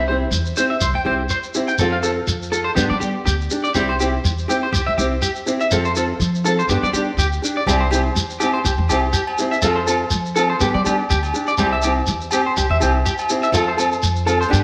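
Drenched in a wet echo-chamber reverb, this sunny, carefree highlife guitar band clip, cut from a longer piece, moves at 122 BPM in a swung 4/4 over a C, F and G cycle in C major, with an up-front, twangy electric guitar at the edge of break-up spinning chorus- and tape-echo-tinged arpeggios above a fingerpicked steel-string acoustic guitar, a woody, thumpy pizzicato upright bass and a grainy shekere, while distant, ringing agogo bells join at 7.7 s.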